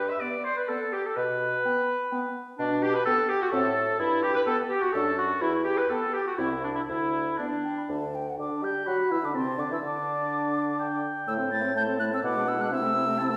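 A bright, up-front clarinet carries the accompaniment in this cheerful, spirited classical-period wind quintet movement in G major, moving at a quick 125 BPM in 3/4 with a rubato feel, as an airy, hollow concert flute with vibrato sings the melody from 0.2 s, a mellow oboe adds a second line, a clear French horn fills in beneath, and a distant, roomy bassoon holds the bass, the ensemble heard from further back in a recital hall with a 1.3-second reverb.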